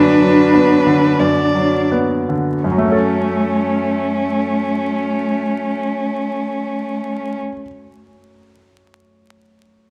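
Solemn and melancholic, this slow romantic movement for piano quartet in F# minor unfolds in a rubato 3/4 at 39-48 BPM, easing back over its first 2.6 seconds as a focused, up-front violin sings the melody with vibrato above a smooth, close cello second line and a brilliant, polished grand piano accompaniment that carries on alone from 7.4 seconds until 9.9 seconds, set in a reverberant recital hall beneath a layer of vinyl crackle in this passage cut from a longer piece.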